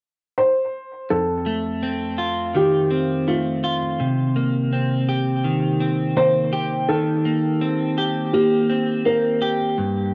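A clean electric guitar sits up front, picking compressed, chorus-drenched arpeggios from 1.1 s onward, its tone warm and soaked in tape echo. Before it enters, a felt-muted upright piano carries the melody from 0.4 s, soft and intimate in a mellow middle register, with its own cassette grain and tape echo, and it drops away at 9.6 s. This blissful, dreamy dream pop cut, taken from a longer piece, moves at an unhurried, straight pulse through F7, Cm7 and Eb6. The home cassette recording gives the whole a hazy, rolled-off top, and a short, wet room ambience wraps the two instruments in a close, cozy space.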